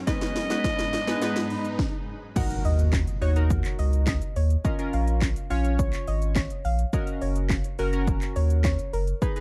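Set in a straight 4/4 feel, this confident, energetic dance-pop clip is driven by an overdriven, up-front house drum kit of layered electronic sounds re-recorded in a large room, with a punchy kick, cracking snare, metallic hi-hats, handclaps, shaker and crash cymbal. The opening build-up brings a drum fill, a background riser, a filter sweep and a shimmering, ethereal pad with octave-up shimmer, while a gritty, raspy alto saxophone growls a brief solo line through tape echo before a stop at 1.8 seconds. Glossy, warbling retro synth keys built on pulse and sawtooth waves supply chorused accompaniment throughout, with sidechain pumping and a low-pass filter. The drop lands at 2.4 seconds with an impact, as a soft, round, dark pluck carries the melody through chorus and tape echo, joined moments later by a deep sine sub bass with sidechain pumping that sits up front. The sound is dry and close in a 1970s studio style, with the chords moving from Abm to Ebm, Bbm and Gb.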